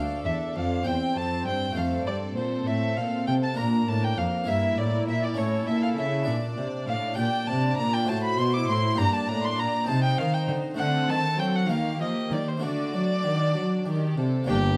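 Close, detailed microphones and a moderate recital-hall ambience frame this dramatic, driving fragment of a baroque-style concerto movement in 6/8, with a faint layer of vinyl crackle beneath it. Up front, a single violin sings the melody with warm, focused vibrato and a smooth top, ranging high above the ensemble. Further back, a studio violin section also carries the melody while a chamber violin section plays a second line, and a distant viola section fills the inner harmony with even, bowed tone. A round, plucked harpsichord in French style accompanies throughout, and a rich cello section anchors the bass through a restless chord sequence that arrives on a closing D chord. A double bass section enters only at 14.5 s, just as the fragment cuts off.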